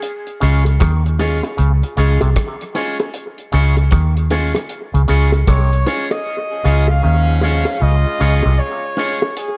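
Hazy and spacious, this dub reggae excerpt in Db major moves at a relaxed 77 BPM with a swung 4/4 feel, built on a damped, dark 70s drum kit with a tight kick and a round, foam-muted fingered electric bass sitting up front. Around them, a twangy envelope-filtered electric guitar, a hollow, nasal auto-wah clav riff, short woody piano stabs and soft-handed, high-tuned bongos all trail off into tape echo within a small, lightly reverberant room. A distant, punchy flugelhorn with scooped notes takes the melody at 5.5 seconds, and a warm horn section with vibrato adds a tight second line from 6.5 seconds in a mix whose top end is rolled off.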